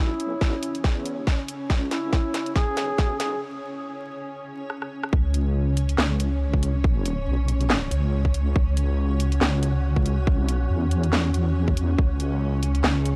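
A deep, soft wobble bass sits up front through this brooding, dark deep dubstep cut in C# minor, its detuned sawtooth-and-sine tone thickened by chorus and tube saturation and trimmed by a high-pass filter. At 140 BPM in a swung, half-time 4/4, a distant, mellow duduk opens with a short folk-style solo line full of vibrato and scooped notes, trailed by dub echo until 3.4 seconds. Behind it, a blurred, evolving granular cloud pad holds sustained chords under a filter sweep during the build-up, while a tape-warm garage kit of cracking snare, handclaps, hi-hat and rim click plays fills alongside a tight, layered electronic kick. After a brief break, the drop lands at 5.1 seconds, and from 5.7 seconds an airy, breathy wind-like noise texture drifts in the background. The dry, gritty recording carries a bed of vinyl crackle, and the passage is cut from a longer piece.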